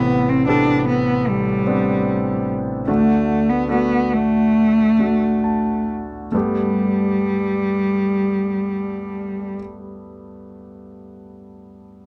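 Tender and hopeful, this fragment of a slow pop piece in four sets a single bowed cello, focused and smooth-topped with vibrato, singing the melody up front until 9.6 seconds over a clear, intimate concert grand piano whose deep bass, long sustain and audible action noise carry the accompaniment through to 12.1 seconds, with the pace slowing through the opening and a piano fill from 5.0 seconds, as the harmony moves from Amadd9 to D and on to Gadd9, all captured in a dry, close 1970s-style studio sound touched by light reverb.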